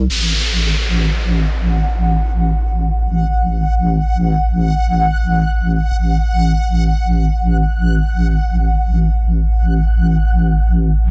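In free time, this drum and bass fragment, cut from a longer piece, feels spacious and cinematic, anchored from the start by a deep, dark wobble bass that sits up front, compressed and thickened with chorus over a single F#m/A harmony. An electronic downlifter and reverse cymbal sweep through the opening seconds and return briefly at the close. From 1.7 seconds a reversed, detuned texture swells high above, its dreamy, granular shimmer bathed in its own reverb within a digital ambience.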